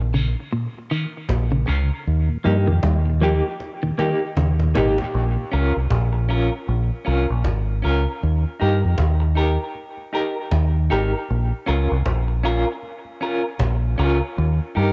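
A dark, round fingered bass sits up front from the start, joined by a hollow-bodied semi-hollow guitar with tremolo and dub echo, a clean, compressed guitar picking arpeggios, and a mellow, lightly overdriven tonewheel organ turning through a slow rotary speaker in the background, in this heavy, deep dub reggae excerpt at 78 BPM in Bb dorian with a swung 16th feel. A woody cajon with faint snares enters at 0.4 seconds and plays a fill from 3.6 to 5.1 seconds. During the fill the arpeggiated guitar drops out at 4.9 seconds, and the organ follows by 5.5 seconds, leaving bass, cajon and echoing semi-hollow guitar to cycle between Bbm and Eb. The taped parts carry a cassette grain, and light reverb gives the home recording a modest digital ambience.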